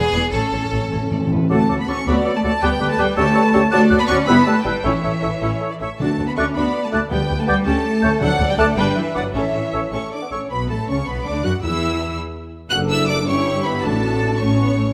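Lively and cheerful, this quick classical-period orchestral movement in D major moves at 106 BPM in a rubato 6/8, with a lush, distant violin melody over focused second violins, vibrato-rich violas, clear cellos and smooth double basses, while round soft-mallet timpani open with a fill and return in brief passages, and a soft-attack oboe, pure flute, bassoon and mellow horns join at 1.5 seconds, the horns sustaining chords to the end and the winds dropping out near 10.5 seconds, in a moderate scoring-stage reverb.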